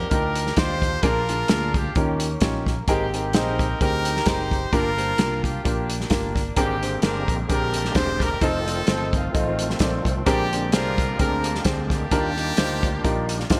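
Bright 1980s-style digital production bathes this uplifting, reverent stretch of uptempo gospel in a lush hall reverb, a fragment cut from a longer piece. At 130 BPM in 4/4 with a light swing on the eighths, it sits in Eb major and moves through rich extended chords such as Ebmaj9, Abmaj9#11 and Bb13. Up front, a clear pop-style horn section carries the melody with light vibrato and a touch of delay, while a tight, warm soul drum kit with a rolled-off top and a pumping room drives the hi-hat, kick and snare. A round, dark fingered electric bass anchors the low end, and a natural-sounding baby grand piano with short sustain fills in the accompaniment. At 6.6 s a reedy tonewheel organ joins in the background, holding sustained chords through a fast rotary speaker and chorus vibrato.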